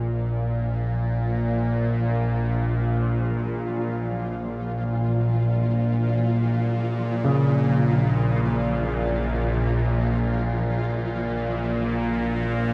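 This dark ambient drone fragment opens at 0.0 s with a bowed-like drone, a tense, string-like sustain in Bb minor sitting up front between Bb1 and Bb2, its detuned sawtooth body carrying a noise layer, vibrato and a phaser inside its own reverb. Beneath it, a dark concert grand piano plays low arpeggios from Db3 to F3 in the background, its mellow, deep tone trailing a diffuse ambient delay. A flickering, grainy triangle texture fades in across the full 12.7 s, hovering faintly between F3 and F4 with slow attack and long release. The music drifts in free time, with all three parts sounding throughout the passage. A vast cathedral reverb with a 6.0-second decay and dark, warm production leave the mood desolate and unsettling.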